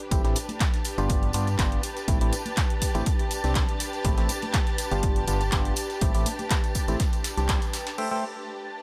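A punchy electronic kick drives this energetic, bittersweet piano house excerpt at 122 BPM in A minor with a light 16th-note swing, alongside an analog drum machine's crash, handclaps and hi-hat, a gritty, very quiet sampler-style kit with a fat snare, and background tambourine and congas, while a hollow, dark FM bass, a nasal organ stab riff with chorus and digital delay, a lush bowed string section and a silky, bright analog string pad all pump against the kick over Am7, G7 and Csus2 chords, with a band accent at 7.5 seconds.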